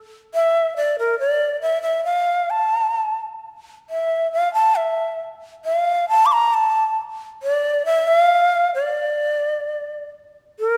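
Rubato phrasing loosely set around 68 BPM in 2/4 shapes this solitary, meditative fragment of Japanese traditional chamber music in D hirajoshi, where a lone bamboo shakuhachi, breathy and bright with tongued chiff, vibrato and lifted highs, sits up front from 0.3 s to 10.8 s, ranging from Bb4 to D6 inside a moderate concert hall reverb of 1.8 seconds.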